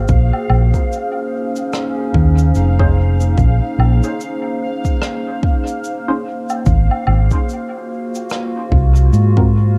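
A dark, small-room production gives this ambient dub fragment, cut from a longer piece, a deep and spacious mood over a swung 4/4 groove. Up front, a round hollow-body electric bass with tube saturation carries the low end alongside a layered electronic kick drum. A warbling, nostalgic pad holds sustained chords, its detuned tones coated in chorus, reverb and vintage sampler grit. A bubbling, resonant texture with random filter steps hovers high and faint, while cabasa, woodblock and rim click, played with brushes and a rolled-off top, drift through dub echo. From 2.8 s a muted, filtered chord stab enters with phaser, lush chorus and dub echo, and the harmony shifts from Bbm11 to Ab13 at 6.7 s.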